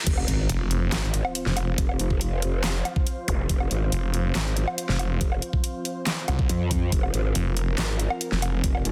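Heavy wobble dubstep in F minor at 140 BPM with a half-time feel, this chaotic, aggressive cut from a longer piece opens straight into a drop with an impact and a very quiet sub drop and zap, as a saturated, wobbling growl bass and a detuned sawtooth bass with a moving notch and distortion snarl up front over an overdriven, knocking electronic kick and a dubstep kit of huge snare, handclaps, hi-hat, woodblock and crash cymbal, while a dark, morphing wavetable pad with phaser and an airy, breathy pad with chorus pump softly in the background of a dense, heavily limited modern master.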